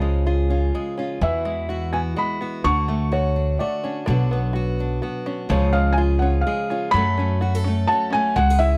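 In a straight three-beat waltz feel, this intimate, haunting acoustic folk piece has fingerpicked steel-string guitar accompanying and a mellow, plunky open-back banjo playing arpeggios from the start, while a woody, growly pizzicato upright bass sits up front beneath them. At 1.2 seconds a soft, felt-muted upright piano enters with a high, hushed melody that carries the spotlight through the first section, moving over chords such as Eadd9, Dmaj7 and Bmadd9 before settling on F#m at 6.9 seconds. The sound is dry and close-miked, with fine detail, and the passage is cut from a longer piece.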